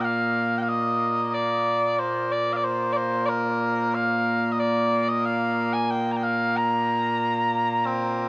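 A mellow set of small bagpipes plays alone from the very start, carrying a sweet, continuous tone with vibrato that sits up front in a huge ambient reverb. This short excerpt of Scottish traditional pipe music moves at a straight 92 BPM in 4/4 and Bb major, and its mood is ceremonial and stirring. The pipes sound throughout the 8.3 seconds, spanning a range from Bb2 to Bb5.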